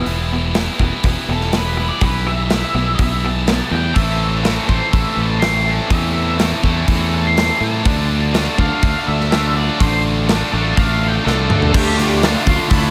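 A dark, fuzzy octave lead guitar with slapback echo solos through this brooding, cathartic quiet-loud alternative rock piece at 123 BPM in A minor, over a growling, overdriven fingered bass up front, a big acoustic rock kit with punchy kick and bright cymbals that plays a fill near the end, a high-gain picked riff guitar joined at 3.9 seconds by a tight distorted riff guitar, a twangy, clean arpeggiated guitar with slapback echo in the background that stops at 4.0 seconds, and a double-tracked overdriven guitar riff arriving in the background at 11.7 seconds as the chords move from Em through Am and Dm to Dmadd9.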